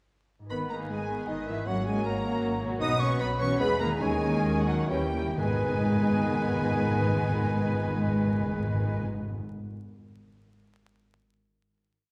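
The lush, vibrato-laden violin section carries the melody of this stormy, restless romantic orchestral piece in triple time, with a rich cello section doubling it at the octave, while airy flutes double it in unison and the clarinet at the octave. A second violin section, a distant viola section, oboe, bassoon and very quiet dark horns hold sustained and syncopated chords over a focused double bass and softly ringing rolled harp arpeggios. Hard-mallet timpani enter at 1.7 seconds with single strokes and rolls, the rubato music slows from 2.2 seconds, and a timpani fill leads into the final chord at 5.4 seconds, all heard in a reverberant church or concert hall with faint vinyl crackle and mains hum.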